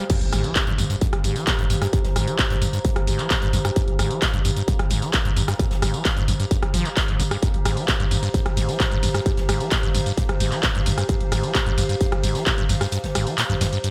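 Driving peak-time techno at 131 BPM in G phrygian, hypnotic and industrial, this short cut opens on a drop with a very quiet swell and impact, then rides a distorted, up-front electronic kick, a techno kit of crash, ride, handclaps, rim click, tambourine and sidechain-pumped hats under gated reverb, faint brushed hi-hat and snare, a squelchy, resonant sawtooth acid riff with delay, a growling, buzzy 808-style bass sitting on G1 through tube saturation and a low-pass filter, and a warbling, nostalgic lo-fi pad with chorus, all in a bright 1980s-style digital sheen until the kick drops out at 12.9 seconds.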